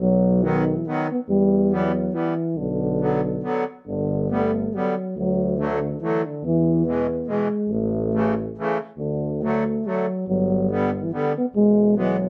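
Bouncy and festive, this alpine folk dance tune moves in a lilting 3/4 at 141 BPM, with a light swing on the eighth notes and a home key of D major. A dark euphonium carries the melody up front, its smooth top and light vibrato giving the line a classical poise in the baritone register. Beneath it, a tuba supplies the bass with a soft attack and gentle vibrato, its warm tone sounding roomy and a touch distant despite sitting forward in the mix. An accordion enters at 0.4 seconds with a reedy, single-reed accompaniment in clear, dry tuning, keeping the harmony present. The chords wander colourfully through minor and added-ninth shades, pass through D and G, and come to rest on E, and light reverb lends the feel of a band playing live together in one room across this 12.3-second fragment of a longer piece.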